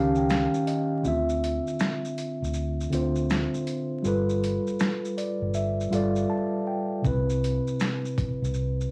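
Vinyl crackle and a moderate studio reverb frame this short lo-fi hip hop excerpt, cut from a longer piece, which moves at 80 BPM in 4/4 with a swung sixteenth-note feel and a nostalgic, melancholic mood. Up front, a mellow tine electric piano carries the accompaniment with a clean, direct tone softened by a cassette tape character and a low-pass filter, adding fills during a break that runs until 7.0 seconds. Beneath it, a vintage fingered electric bass sits low, dark and round, its foam-muted, amped sound anchoring the harmony. From 0.2 seconds, a boom bap sampler-style drum kit of kick, snare, hi-hat, shaker and finger snaps comes in pitched down, compressed and gritty from overdrive, with a thumpy kick and a medium-tuned snare. The chords drift from D#9 to Dm9, then G9, settling on Cmaj7 at 7.0 seconds.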